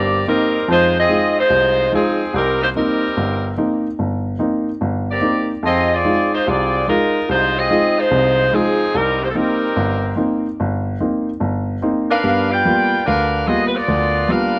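Swinging jazz in a dramatic mood, this excerpt sets a clear saxophone section carrying the melody with light vibrato and a vintage character. A baby grand piano accompanies throughout, intimate and natural with audible action noise and short sustain. Both parts sit up front under close, detailed microphones and light reverb, moving through minor seventh harmony before a tense altered dominant chord arrives at 12.2 seconds.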